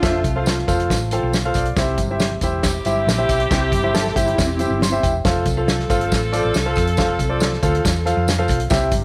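A clear grand piano and a punchy acoustic drum kit lead this uptempo 1960s-style soul cut in straight 4/4, with a passionate, driving feel. The piano sits up front with deep bass and long sustain, playing the accompaniment and adding fills at 0.9 and 4.6 seconds, while a dark, round hollow-body electric bass drives underneath. A tight saxophone section carries a second line in a jazz style, its vibrato clear over the rhythm. A mellow, compressed electric guitar with tremolo surfaces briefly for a riff at the very start and again around 3.9 seconds. Bright, thin-skinned congas and a jingly tambourine sit quietly in the background, and light reverb gives the small room a natural air.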